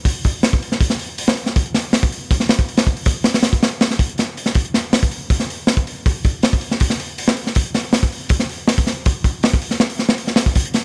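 A straight 4/4 breakbeat at 160 BPM drives this dark, nostalgic drum and bass excerpt, where a crunchy acoustic drum kit of kick, snare and hi-hat, with its tight kick, medium-tuned snare, gritty saturation and rolled-off top, sits up front in a dry studio room from 0.1 to 10.8 seconds.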